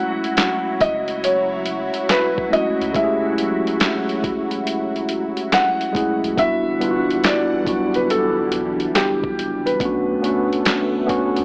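A felt-muted upright piano opens this nostalgic, reflective lo-fi hip hop excerpt at 70 BPM in E dorian, its soft, intimate melody resting over a worn, slightly out-of-tune tine electric piano with light overdrive and a lush, detuned sawtooth pad treated with chorus and phaser. A gritty, pitched-down boom bap kit enters at 0.2 seconds with a thumpy kick, medium-tuned snare, hi-hat and handclaps under a swung 16th-note feel, and a deep, round dub sub bass settles into the background from 0.8 seconds. The chords move from F#m7 to Em9 at 6.4 seconds and then Bm7, all framed by light reverb and an AM radio sound, with the melody stopping at 10.5 seconds as this fragment of a longer piece runs on.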